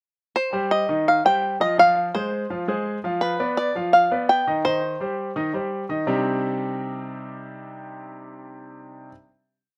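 Dry and close, as if played outdoors, this short, driving Latin piece sets a twangy, percussive bluegrass banjo up front, fingerpicked through a free-roaming, passionate melody with a slapback echo. Beneath it, a clear concert grand piano lays down a piano montuno in octaves, its deep bass, audible action noise and long sustain also touched by slapback echo. The banjo drops out at 5.9 seconds, leaving the piano to ring out a final chord from 6.1 seconds until 9.1 seconds.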